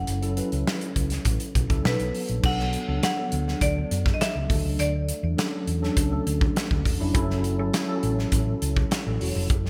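A straight 4/4 groove at 102 BPM drives this breezy, urban slice of polished 1980s jazz-funk pop, cut from a longer piece, with an up-front modern studio drum kit of punchy kick, medium-tuned snare, hi-hat and crash cymbal wrapped in gated reverb and a pumping room sound. A dark, round hollow-body short-scale electric bass holds the low end beneath a mellow tine electric piano whose clean, direct accompaniment carries an ensemble chorus through changes such as F#m7, Bm7 and Dmaj7. A woody marimba struck with hard mallets plays the melody, its vintage, band-limited tone trailed by digital delay until it drops out at 6.8 seconds, all set in a bright digital production with light small-room reverb.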